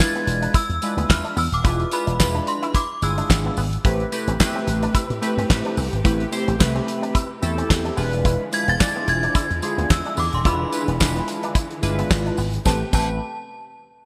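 Late-night and funky, this short cut from a longer early-eighties boogie funk piece rides a dry, fat-snared drum kit with handclaps and a punchy, up-front slap bass through an envelope filter, under a glossy chorused polysynth with phaser, a twangy filtered guitar riff and jingly tambourine in the background, while an inharmonic FM synth chime rings out its melody from 0.0 to 3.5 seconds and again from 8.5 seconds, and a bowed studio string section with vibrato and portamento holds sustained chords from 3.9 seconds, all in a bright, lightly reverberant digital production.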